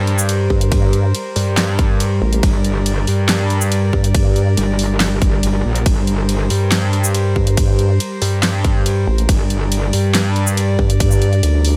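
A half-time 4/4 groove at 140 BPM drives this heavy, chaotic wobble dubstep excerpt in G minor, where a punchy overdriven electronic kick and a big-room dance kit with a huge snare, handclaps, hi-hat, ride cymbal and shaker pound beneath a metallic, distorted FM wobble bass with chorus, joined by a dark, nasal vowel-sweep wobble bass that drops out at 4.6 seconds and returns at 7.4 seconds, while a floating, close chamber string section holds soft, low-pass-filtered Gm chords that pump against the sidechain, all in a dry mix.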